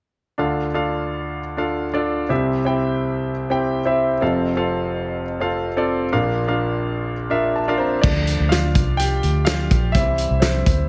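Piano-driven pop with a bittersweet, dramatic mood, this short excerpt opens with a clear, intimate concert grand playing over a Dm–C–F–Bb progression, its deep bass, long sustain and audible action noise placed up front in a small room with light reverb. After a piano fill at 7.1 seconds, the grand takes a solo from 8.0 seconds as a loose indie kit with a fat snare, punchy kick and gritty, saturated sound enters together with a dark, round, foam-muted electric bass.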